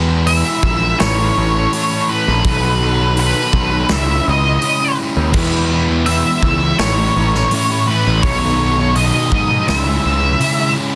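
An octave-fuzz lead guitar sits up front, its warm, distorted picked melody hovering high over this short cut from a longer quiet-loud alternative rock piece in E major at 83 BPM, with a bittersweet, restless mood. Just as prominent is a growly, bright fuzz bass, picked and overdriven with a direct, amped edge, holding down the low end. A crunchy overdriven guitar plays the riff from 0.0 s, touched with spring reverb, while a big acoustic rock kit with punchy kick, medium-tuned snare, hi-hat and bright crash cymbals drives a straight 4/4 feel from a large room. At 5.3 s a thick fuzz guitar joins in the background with a riff of its own, adding weight as the E, A, B7 and C#m progression comes around again. The overall sound is dry, dense and heavily limited in a modern master, with the parts running until the cut at 11.0 s.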